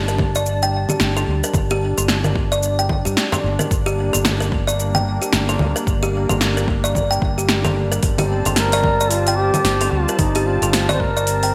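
A detuned sawtooth pad, chorused and pumping against the beat, holds a sustained Gmadd9 chord from the opening second while a woody, hollow kalimba spins delayed arpeggios above it and a growly, amped fretless bass sits up front underneath. This organic downtempo excerpt carries a warm, mystical mood, its swung sixteenths giving the groove a loose, easy sway. A deep house kit with a punchy snare, metallic hats, congas and shaker arrives almost at once, overdriven and gated, joined by a deep, distorted electronic kick. A very quiet frame drum, close and dry, adds two brief hand strikes near 3.3 and 7.6 seconds. At 8.6 seconds a dark solo duduk enters with scooped, folk-style notes through a delay, floating over the bright 1980s-style digital sheen and a lush hall reverb.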